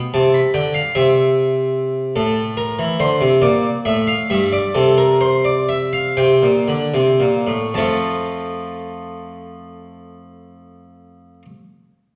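Set in a wet recital-hall reverb, this lively, elegant baroque-style two-part invention in F major and 6/8, cut from a longer piece, features a solo Flemish-style harpsichord, close-miked and up front with a brilliant, plucked tone and octave strings, moving at 36-50 BPM in dotted quarters, slowing from 0.9 to 7.7 seconds before arriving on an F chord and playing on until 11.5 seconds.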